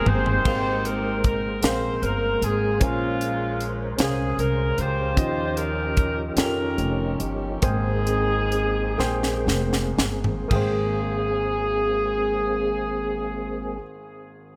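Jubilant and uplifting, this slow gospel passage in a straight 6/8 sets a mellow saxophone section up front, carrying the melody with vintage vibrato and tape echo, over a natural-sounding grand piano, a round, dark tonewheel organ with key click and fast rotary speaker holding sustained chords in the background, and a woody, thumpy pizzicato upright bass, while a crisp, polished drum kit with a high-tuned snare and punchy kick opens with a fill, eases the pace from 5.2 seconds with another fill leading into a new section at 10.5 seconds, and drops out at 10.8 seconds, all inside a small room's reverb.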